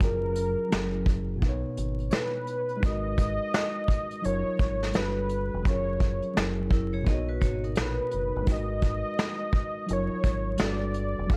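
A dry, gritty recording with vinyl crackle frames this mellow, nostalgic lo-fi hip hop excerpt in F# major at 85 BPM with a swung 4/4 feel, where a velvety, detuned sawtooth synth lead with chorus and tape echo carries the melody up front over a worn, slightly out-of-tune electric piano through cassette tape, a round, deep fingered bass and a dark brushed drum kit, while a ringing hard-mallet vibraphone with tape echo adds a brief second line from 6.7 to 8.4 seconds.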